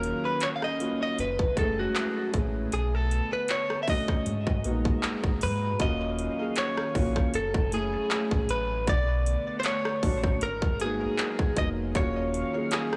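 A blown-out, overdriven mix with a small-room ambience frames this moody, sensual slice of contemporary R&B, cut from a longer piece and carrying a gentle swing. Up front, a trap drum kit hits hardest, with a hard-clipped kick, metallic hi-hats, handclaps and rim clicks, all overdriven and re-recorded in a small room. A clean electric guitar, recorded direct and compressed, carries the picked melody, its notes trailed by digital delay. Beneath it, a felt-muted upright piano adds soft, dark, intimate accompaniment with a thick felt tone. A chorused pulse-width pad holds shimmering, retro chords that move with modulation, while a deep sine sub bass with an added octave anchors the low end until it drops out at 12.4 seconds. The harmony cycles through lush minor ninth chords, and a second section begins at 5.8 seconds.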